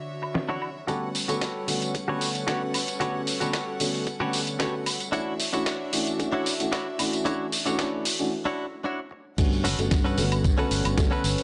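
A moderate plate reverb and a softened top end frame this groovy, feel-good nu-disco excerpt at 113 BPM, where a dark, mellow baby grand piano with slapback echo and a rich, earthy chamber string section pumping in the background hold Dmaj9 and Gmaj9#11 chords from the start. A twangy, up-front clean guitar riff with subtle chorus enters alongside a dusty, gritty soul drum kit of snare, hi-hat, tambourine, woodblock and crash, joined by a thumpy electronic kick at 0.9 seconds as the build-up runs to a short break. At 9.4 seconds the drop arrives with a growly, overdriven fingered bass that pumps under the groove.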